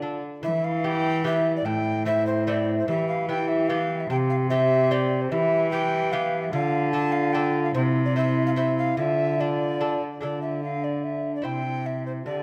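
Renaissance-style consort dance in a courtly, solemn mood, moving at 147 BPM in a straight 3/4 in D dorian, tuned slightly low to A4 = 436 Hz. A mellow tenor recorder carries the melody up front, its airy, woody tone marked by a crisp chiff on each attack and an expressive vibrato. Beneath it, a bright, delicate fingerpicked lute on double gut strings, some doubled at the octave, shares the accompaniment with a smooth-topped trombone played in a classical style with light vibrato. A rich cello, bowed by one player with a nasal, reedy gut-string tone, holds the bass. All four parts play throughout the 12.4 seconds, cut from a longer piece, with the harmony moving through Em, Am, C and Dm. A moderate recital hall reverb with a 1.7-second decay surrounds the consort.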